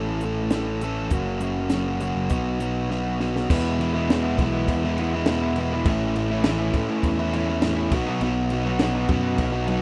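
A crunchy, overdriven electric guitar sits up front in this indie rock piece, picking a riff in E major at 102 BPM in a straight 4/4, with a carefree, wistful mood. A bright, direct picked electric bass plays beneath it from the start. A compact cocktail drum kit joins at 0.2 seconds with a punchy kick, a high-tuned snare, hi-hat and crash cymbal, its small-room sound dark and smooth with a rolled-off top. The opening moves through A, F# and B, and a drum fill at 2.9 seconds leads into a new section where the chords shift from E to A and B. From 3.9 seconds a second, biting overdriven guitar adds its own picked riff in the background, touched with subtle chorus and slapback echo. The rough home-demo mix carries light reverb, and the clip is cut from a longer piece.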